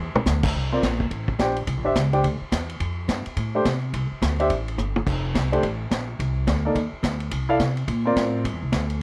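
A dry, close studio sound with a 1970s character and a light touch of reverb puts every part up front in this short fragment of a larger big band swing piece. The mood is swinging and joyful, with an eighth-note swing in 4/4. A vintage acoustic drum kit plays a fill at 0.0 seconds and adds another at 4.8 seconds, its dark cymbals, high-tuned snare and punchy kick heard through a rolled-off top. Beneath it, a plucked upright bass on gut strings gives a woody, thumpy bottom, while a clear, present grand piano enters at 0.7 seconds to comp through C13, Fadd9, Csus2, F13 and C7sus2.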